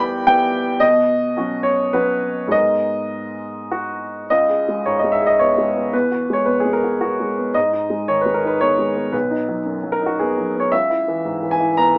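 Reflective and intimate, this short passage of neoclassical minimalist piano unfolds in a rubato 3/4, with a solo upright piano sounding woody and natural, placed up front with long sustain across a range from B1 to B5. It opens on Em moving through Badd9 and G#madd9, then at 4.3 s shifts into a new section that drifts from C#5 through Eadd9, G#m and B before settling on C#m7. The playing sits in a small room with moderate reverb and has a live, small-speaker character, heard as a fragment lifted from a longer piece.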